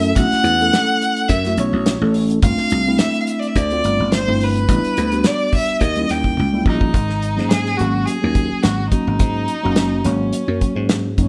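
Funky and slick, this cut from a longer electric jazz fusion piece moves at 106 BPM in B minor with a light sixteenth-note swing, played live by a band in a moderately reverberant stone room. A focused, bowed violin with vibrato carries the melody over a clean tine electric piano heard through its built-in speakers. A growly, foam-muted thumbed slap bass and a damped 70s kit with a tight kick keep the groove, and a drum fill at 6.4 seconds leads into a new section at 6.9 seconds.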